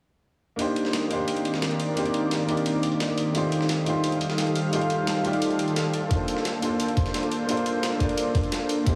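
Soaked in a huge ambient reverb, this dreamy, lush liquid drum and bass fragment opens at 0.6 seconds with a boxy, deep-bottomed grand piano carrying tape echo up front. Alongside it, a dusty soul sampler-style kit supplies ride cymbal and a medium-tuned snare, both high-pass filtered, and a gritty, low-pass filtered electronic hi-hat sits in the background. At 0.9 seconds a thick, detuned sawtooth unison pad with chorus and sidechain pumping joins, holding sustained chords through Cm9, F9 and Bbmaj9. A compressed, thumpy electronic kick, pitched up and tape-colored, arrives up front at 6.1 seconds.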